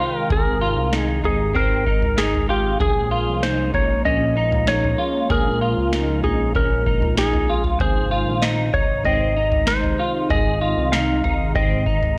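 A twangy, up-front lap steel guitar sings a slide melody through analog delay, floating over a swirling, phased analog pad and clean picked electric guitar arpeggios softened by ensemble chorus and delay, in this blissful dream pop fragment at 96 BPM in Ab major. At 0.3 s, a glossy, saturated synth bass and a booming analog drum machine join, with a deep kick, crisp snare and toms that ring as if re-recorded in a large room, while a crystalline FM bell chimes briefly at 8.4 s. The harmony drifts from Abmaj7 to Bbm7 and settles on Ab, all captured with a gritty cassette-tape character and light reverb.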